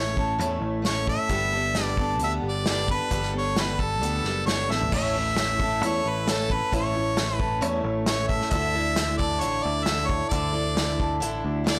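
A clear, up-front harmonica carries the melody in this hopeful, open-road slice of folk rock and heartland rock, its pop-style solo line ringing through plate reverb in A mixolydian at 133 BPM in a straight 4/4. Beneath it, a jumbo steel-string acoustic guitar is picked with a warm tone and audible finger squeak, while an electric guitar through a small old amp plays a slightly broken-up, lo-fi riff in the background, compressed and colored by phaser. A picked electric bass sounds dark, round and punchy, and an unplugged drum kit played with bundle sticks enters at 0.2 seconds, with a tight kick, medium-tuned snare, hi-hat, toms and crash cymbal in a small-room sound. The harmony moves from A to Gadd9, and after a drum fill at 4.7 seconds the passage repeats, returning to A before shifting to Dsus2 at 8.5 seconds. The whole mix sits in moderate studio reverb and has a blown-out, overdriven recording character, cut from a longer piece.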